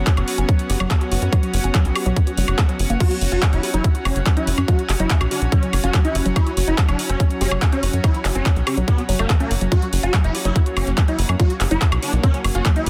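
Psychedelic trance at 143 BPM in F# major, hypnotic and alien, where an overdriven, up-front kick and a layered kit with bright hats, handclaps, woodblock and crash drive a tight, punchy sequencer bass beneath a morphing wavetable pad with phaser, a pure floating string section, and a dark, woody wave-folded pluck riff with chorus and delay, all three pumping to the sidechain, before a swarming, detuned rave lead with chorus, phaser and delay takes the melody from 3.0 seconds in this dense, heavily limited excerpt.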